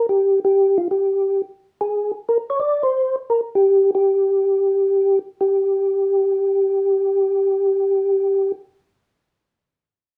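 A swung 4/4 jazz fragment that slows down from 2.2 to 5.4 seconds, in which a lone percussive tonewheel organ plays soft, flute-like lines with a percussive second-harmonic attack through a slow rotary speaker and chorus vibrato, sitting up front in light reverb for a soulful, late-night mood until it stops at 8.5 seconds.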